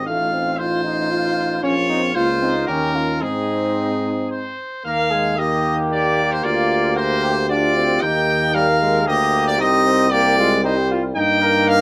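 Classical brass quintet music in a stately triple metre, heard as a short passage cut from a longer piece, with all five players sounding from start to finish. A bright, up-front trumpet carries the melody over a flugelhorn second line colored with vibrato. French horn and trombone supply accompaniment in the background with light vibrato, the horn punchy and close, while a roomy, distant tuba anchors the bass. Moderate studio reverb gives the ensemble a warm, dignified glow, and the harmony moves to a new tonal centre at 4.8 s.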